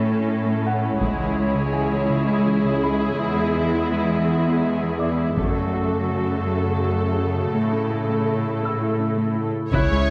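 A slow 6/8 pulse at 55 BPM, counted in dotted quarters, drives this brooding, relentless stretch of hybrid orchestral and electronic film score, cut from a longer piece and built as a steady build-up over a progression of A, C#m, E, F#m and back to A. From the start, a rich, up-front cello section carries the bass beneath a hollow, flute-like soft pad with chorus holding sustained chords, while a distant, expressive viola section supplies accompaniment. A dark, harp-like synth pluck with chorus and digital delay rings out arpeggios in the background, and a clear grand piano adds a delayed high texture further back. A taiko ensemble struck with hard sticks enters at 1.0 seconds with a vintage, band-limited thump. At 9.7 seconds the violin sections arrive on melody and a second line, joined by a distant, roomy French horn section on sustained chords and a deep, round sub bass, with a barely audible double bass section, all set in a concert hall with moderate reverb.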